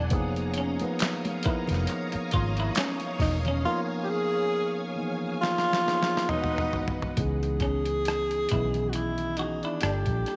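This R&B and neo-soul excerpt from a longer piece sets a smooth, late-night mood at a slow 68 BPM in 4/4, with a swung sixteenth-note feel. A gritty, pitched-down boom bap kit sits up front with a thumpy kick, a medium-tuned snare, hi-hat, rim clicks, handclaps and toms. A round, punchy, foam-muted fingered bass holds down the low end. A mellow tine electric piano supplies the accompaniment, while a clean, picked semi-hollow guitar adds a second line through spring reverb. A lush, warbling string machine with ensemble chorus sustains soft-attack chords until 7.2 s, and very quiet, bright, damped congas appear only briefly at the start. A breathy, close-miked tenor saxophone enters at 3.2 s with subtone and vibrato, carrying the melody through tape echo, and after a drum fill the harmony settles into C# minor at 7.2 s, all within a moderate echo-chamber reverb.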